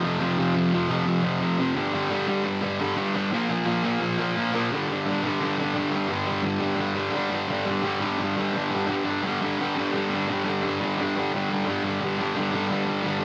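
A wet studio reverb surrounds a lone, up-front fuzz guitar, bright and double-tracked, with distortion and digital delay in this rowdy, raw rock excerpt cut from a longer piece. At 173 BPM in a straight 4/4, the compressed, picked guitar plays solo throughout, moving through F5, G5 and Bb5 power chords. At 4.7 seconds it settles back onto G5 as a new section begins and runs to the cut at 13.2 seconds.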